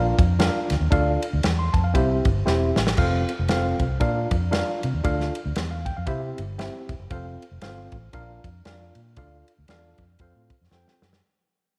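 Joyful and danceable, this uptempo 1960s-style soul excerpt swings along at 116 BPM in F major, cycling through Bb, Dm, C and F as it fades out across its whole length. A worn, slightly out-of-tune tine electric piano with light overdrive sits up front, as if heard through its built-in speakers, over a dark, round, foam-muted fingered electric bass with an amped punch. An airy, polished acoustic drum kit with a medium-tuned snare and punchy kick drives the groove on kick, snare, ride and crash, with fills at 2.5 and 10.7 seconds, all in a lightly reverberant room.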